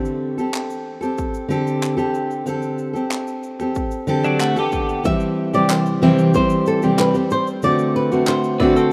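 Tender and wistful, this short acoustic pop excerpt at 93 BPM in 4/4 rests on a full-bodied, up-front fingerpicked steel-string guitar, joined by an electronic drum kit with a heavy kick, clanging snare, snaps and shaker, and hollow group handclaps from 0.5 s. A bright, twangy twelve-string electric guitar adds a clean second line from 4.2 s, and at 5.1 s a flamenco guitar enters with arpeggios where finger squeak can be heard, as the harmony moves from D7sus4 to C and then D7. Moderate plate reverb surrounds a rough home-demo mix.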